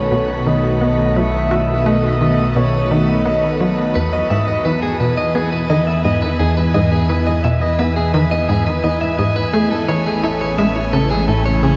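A tight, punchy sequencer bass drives this hypnotic, cosmic slice of ambient space music from its first moments, its ring-modulated sawtooth and square-wave riff plucked through a filter and spread by lush chorus and delay. Underneath, an evolving analog drone holds the low end with detuned pulse-width tones, a slow attack and a long, mellow release, while a phased string machine sustains bright, swirling vintage chords. A shimmering, retro pulse-width lead with vibrato and a dark sub-octave carries the melody until 4.0 seconds, when a clean, compressed electric guitar steps up front with picked arpeggios echoed by delay. At a steady 86 BPM in 4/4, the harmony moves from B7 to Emaj7 and settles on Amaj7 at 9.5 seconds. A wet shimmer reverb and a worn, warbling cassette-tape sound with drifting pitch and a dulled top end lend the whole passage a hazy, dreamlike quality in this short cut from a longer piece.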